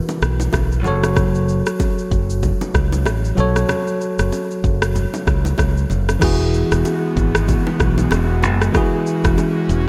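A punchy, bright fingered electric bass sits up front in this smooth, sultry afrobeats excerpt at 95 BPM, swinging over an overdriven electronic drum kit with a deep kick, rim click, shaker and crash, all roughened by vintage 12-bit sampler grit. A clean tine electric piano heard through its built-in speakers carries the Eadd9 and F#m harmony, while soft-handed bongos and congas sit in the background of a live room. At 6.2 seconds an airy, breathy pad with warbling chorus and a slow attack swells in beneath the bright, lightly reverberant 1980s-style digital production.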